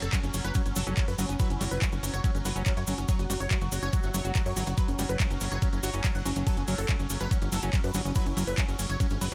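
A knocking, up-front electronic kick and a tight, punchy sequencer bass of sawtooth and ring-modulated square drive this intense 142 BPM psychedelic trance excerpt, joined by layered electronic drums with metallic hats, handclaps and ride, plus a grainy acoustic cabasa in the background. A detuned supersaw stab carries the melody from C#4 to F#5 with phaser, tape echo and sidechain pumping. Beneath it sit a squelchy, screaming distorted acid riff entering at 0.1 s, a bubbling stepped-filter chord texture drenched in chorus and reverb, and a very quiet wobbling FM bass line.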